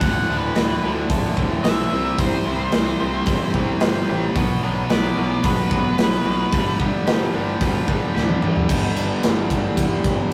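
Quiet-loud alternative rock at 111 BPM in a straight 4/4, this short cut from a longer piece feels anthemic and restless, moving through D, C, B minor and G before landing on a G power chord at 8.7 seconds. A dark, fuzzy octave-fuzz lead guitar carries the melody in a solo until 6.8 seconds, while a very quiet, clean, twangy electric guitar picks arpeggios beneath it until 8.7 seconds. Two bright distorted electric guitars drive the riff, one overdriven and the other compressed and set in the background, over a growly, overdriven fuzz bass. The big acoustic drum kit sits up front with a punchy kick, medium-tuned snare and bright cymbals, and it plays a fill from 8.1 to 8.7 seconds. The sound is a rough rehearsal-room recording with light reverb.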